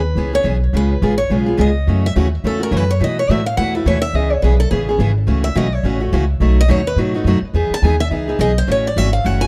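This acoustic string swing clip in the jazz manouche style is playful and lively, moving at a brisk 211 BPM in E major with a lightly swung eighth-note feel. A picked steel-string acoustic guitar carries the melody from the start, its boxy, parlour-sized tone touched with tape echo as it solos through the whole 9.5 seconds. Beneath it, a pizzicato upright bass sits up front with a woody, growly, thumpy sound that anchors the groove. A second picked steel-string guitar joins at 0.2 seconds with accompaniment, sounding bright, fresh-stringed and concert-sized. The harmony moves from E6 through C#7, F#m7 and B7sus4, then C#m7, F#m7 and B7, resolving to Emaj7 before landing on A6 at 8.7 seconds. Light reverb and a dark, warm production round out the recording.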